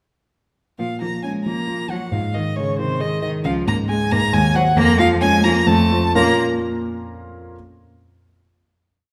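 Dramatic and stormy, this brief, quick classical-period movement for piano trio in Bb minor at 134 BPM in 3/4 moves with uneven, rubato beats as a rich, smooth violin with vibrato carries the melody up front, a focused cello doubles the tune at the octave, and a warm concert grand piano with deep bass rocks through short-sustained broken chords, from Bbm through Fmadd11 and F back to a final Bbm chord at 6.2 seconds, all in a wet recital hall.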